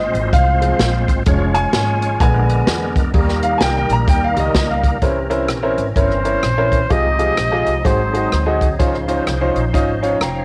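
A brilliant, up-front grand piano takes a solo through the first 5 seconds of this jubilant, hopeful uptempo gospel excerpt at 128 BPM in a swung 4/4 over chords beginning on F minor, accompanied from the start by a reedy tonewheel organ with key click and fast rotary speaker, a woody pizzicato upright bass, and an airy, punchy big-band drum kit with cassette-tape colour, before a raspy, growling trumpet with scooped notes and vibrato enters at 6.0 seconds and plays until 8.6 seconds, all in a lightly reverberant home cassette recording.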